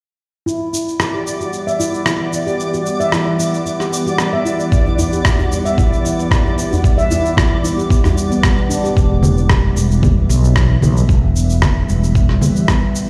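A ringing, nitrided-steel handpan plays fingertip arpeggios up front through a low-pass filter sweep and digital delay in this meditative, earthy organic downtempo excerpt at 113 BPM in E minor, over an ethereal, detuned pad with ensemble chorus and sidechain pumping, gritty sampler-style shaker, rim click and congas, a twinkling granular shimmer, a thumpy kick from 4.7 s, a deep djembe with metal rattles, and a growly, round fretless bass that arrives at 9.0 s as the handpan stops, within a large studio reverb.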